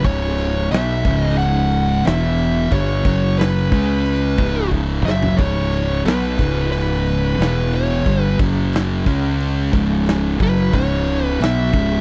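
A dry, close 1970s-style studio sound frames this ominous, sludgy stoner and doom metal excerpt in C# minor at 90 BPM, where an up-front, punchy fingered bass with overdrive and two thick fuzz guitars in the background grind through a riff over C#m, E5, G5, F#5 and C#5, while a compressed fuzz lead guitar with slapback echo carries the melody and a dark, smooth big rock drum kit with a rolled-off top and medium-tuned snare plays a fill at 4.7 seconds.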